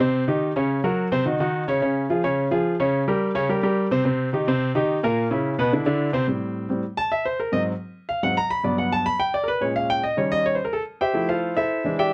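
Sophisticated and fiery, this brisk jazz excerpt at 215 BPM in straight 4/4 features a solo baby grand piano, natural in tone with short sustain and placed up front, ranging from G2 to B5 through a restless progression that moves from Cm and Gb to Bbm69 and Eb6 before shifting at 6.3 seconds through Am7, G#7 and Gmaj7 to close on Fmaj9, all caught by close, detailed microphones in a light reverb and tuned to A4 = 435 Hz.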